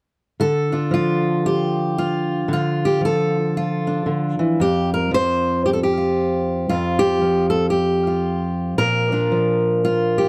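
A lightly swung 4/4 pulse at 114 BPM carries this peaceful, pastoral folk fragment, cut from a longer piece, in which a single fingerpicked steel-string acoustic guitar with a warm, concert tone sits up front in a close, detailed, nearly dry recording, moving from D minor at 0.4 seconds through a chordless stretch from 4.6 seconds to B-flat at 8.8 seconds.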